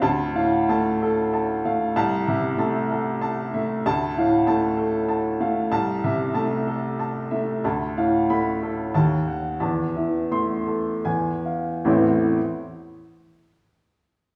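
A clear, woody upright piano opens this passionate, stormy romantic character piece in A minor, played solo in a rubato 3/4 at 72-99 BPM across a range from A1 to C6, its open tone set back in a wet recital-hall reverb as the harmony moves from D minor through diminished colours to E and slows from 6.7 to 11.8 seconds before settling on A minor.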